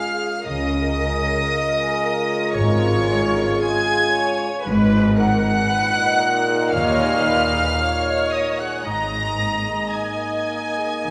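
A soft-attacked, sul tasto violin section carries a pure, floating melody through this hopeful, uplifting orchestral film cue in free rubato, joined in the background by a clear oboe, a second bowed violin section and an airy, distant flute ensemble. An intimate viola section adds accompaniment, a French horn section holds warm sustained chords and a ringing concert harp plays fingerpicked arpeggios, while from 0.5 s a woody, dark double bass section and a close cello section take the bass, all set within a wet scoring-stage reverb.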